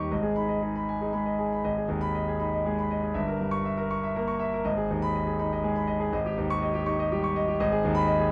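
A bright concert grand piano carries this stormy, passionate fragment of a classical virtuoso study alone, sounding brilliant and up front, with a deep bass and long sustain across a range from G1 to C#6. The music sits in G# minor in a rubato 6/8, moving at about 80 dotted-quarter beats per minute with a pliant feel. The harmony turns from G# minor through a diminished seventh chord at 3.1 seconds, returns home, and then leans on a dominant seventh over a G# bass before settling back on G# minor at 7.6 seconds. Light reverb gives the piano an open sense of space, while the overall production stays dark and warm beneath its sparkle. Cut from a longer piece, the passage lasts just over eight seconds and breaks off mid-flight.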